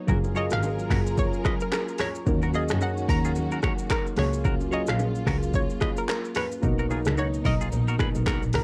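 Captured as a home cassette recording with light reverb, this sunny, joyful afrobeats excerpt swings on a hollow, bouncy square pluck melody over glassy, wave-folded digital keys, a lush bowed string section in the background, a twangy clean electric guitar riff, a smooth bowed double bass, an overdriven deep house drum kit with snaps, claps and shaker up front, and very quiet vintage congas and bongos.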